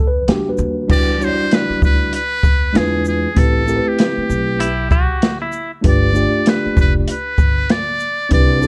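Mellow and cool, this swung jazz-hop excerpt at 97 BPM in E minor sets a woody, thumpy pizzicato upright bass and a clean tine electric piano with plate reverb under a dark, boomy jazz kit carrying 12-bit sampler grit, while a buzzy metal-muted trumpet with vibrato and scooped notes takes the melody from 0.9 seconds and a hollow-bodied semi-hollow guitar adds a brief second line between 4.6 and 5.7 seconds over Em9, E7b9, Am9 and G9 chords.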